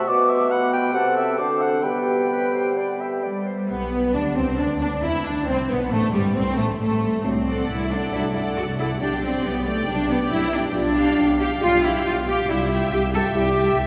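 The rhythm moves in a quick four-beat pulse with a flexible, rubato feel in this cheerful, lively classical-period movement for symphony orchestra. It opens with a woodwind group of clarinet, mellow cor anglais up front, an airy, hollow flute and bassoon accompaniment, all stopping around 3.5 to 3.7 seconds, while a dark, distant French horn section holds sustained chords until 13.5 seconds. From 3.7 seconds the strings take over: a violin section carries the melody in the background, a rich, close second violin section adds a countering line, and dark violas fill in the accompaniment. A focused, lush cello section, entering at 3.2 seconds and sitting up front, shares the bass with a double bass section whose playing has expressive portamento. Everything rings out in a cathedral-like reverb that gives the passage a spacious, churchlike glow as the harmony shifts toward C major near its end.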